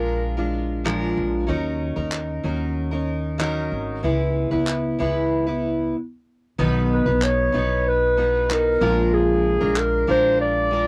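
Acoustic pop at 94 BPM in B major, easy-going and carefree, cut from a longer piece and carried by a full-bodied picked steel-string acoustic guitar with audible finger squeak, a woody, growly pizzicato upright bass, and crisp group handclaps that run from 0.9 to 9.9 seconds. A dark, roomy clarinet sounds briefly at the start, then returns at 6.9 seconds with a classical-style solo melody after a short stop. The home cassette recording lends the guitar and clarinet a tape character, all set in a small, wet booth ambience.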